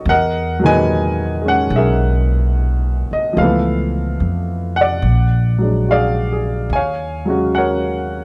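Jazz ballad at 72 BPM in 4/4 with a swung eighth-note feel, intimate and wistful, cut from a longer piece. A warm, open baby grand piano with short sustain carries the accompaniment through lush extended harmonies, moving from Emaj9#11 to C#7alt, A#7b13 and Ebm11 at 6.7 seconds, while a woody, dark, thumpy pizzicato upright bass on gut strings anchors the low end from 0.1 seconds. Both instruments sit up front in a dry, close 1970s-style studio sound with a small room ambience.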